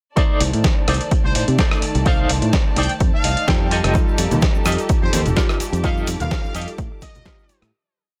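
An overdriven, punchy electronic kick drives this sensual, nostalgic filtered disco house piece with a four-on-the-floor pulse, joined by a gritty sampler-style kit with a fat snare, rim clicks and pumping hats, a dark, round fingered bass playing a funky syncopated line, a twangy envelope-filtered electric guitar riff with tremolo, a detuned sawtooth polysynth comp with chorus and phaser in the background, and a rich bowed string pad. A brilliant trumpet section adds tight short phrases with delay from 1.2 seconds, and a clean guitar fill at 3 seconds and congas with tube shaker arriving from 3.9 seconds enrich the groove over Cm69 and F9 chords before a fade-out begins at 5.2 seconds, all in a dry, pumping sound.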